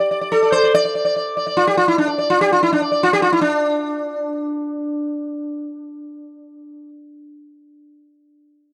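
A solo sitar opens this brief excerpt of introspective, solemn Indian classical music, playing raga bhimpalasi in D in a 5/4 metre at 147 BPM, ranging from D4 to D5. The plectrum-plucked acoustic tone is mellow and buzzing, with shimmering sympathetic strings. It sits up front in a dry, close 1970s-style studio sound with a touch of studio reverb, and the tempo speeds up until 5.4 seconds as the playing moves from its opening passage into a second one at 3.4 seconds.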